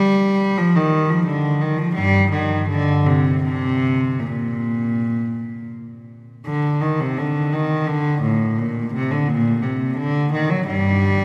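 A lone bowed cello opens the recording, its rich, reedy gut-string tone captured close and up front in period style, playing a radiant, serene baroque-style suite movement in the low register from G2 to G3. The playing moves with a free rubato around 78-87 BPM in 4/4, settling into G minor from 6.5 s, while a long church reverb of about 4.0 s surrounds the single player. This brief passage is cut from a longer piece and ends at 11.2 s.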